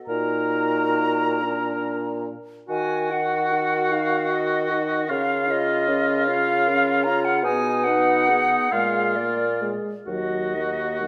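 Solemn and melancholic, this slow romantic movement for wind quintet unfolds in 6/8 with flexible rubato, all five players sounding together from 0.1 to 11.1 seconds. Up front, the silver concert flute carries the melody with a pure, metallic tone, soft attack and vibrato. The oboe sings a distant, roomy second line with a light shimmer, the bassoon grounds the bass with a warm, gently wavering tone, and the French horn and a very quiet clarinet fill in mellow accompaniment, the horn smooth on top, all inside a wet recital-hall reverb in this excerpt from a longer piece.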